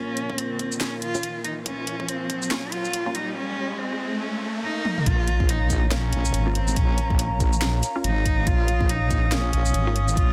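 Cavernous and brooding, this excerpt of deep dubstep moves at 141 BPM with a swung, half-time feel in Bb minor. A single bowed cello carries the melody throughout, its expressive vibrato and portamento softened by a low-pass filter and trailed by dub echo, while a dark, moody analog pad holds sustained chords beneath it with chorus. During the build-up, a garage kit with a cracking, overdriven snare, claps, hi-hat, shaker and toms works alongside an electronic kick, an electronic riser enters at 0.4 s, and a very quiet filtered chord stab adds muted, resonant plucks. After a drum fill at 4.9 s, the drop lands at 5.1 s, bringing in a heavy, saturated wobble bass that sits up front with chorus as the deep kick returns. The dense, heavily limited master keeps the sound dry and close.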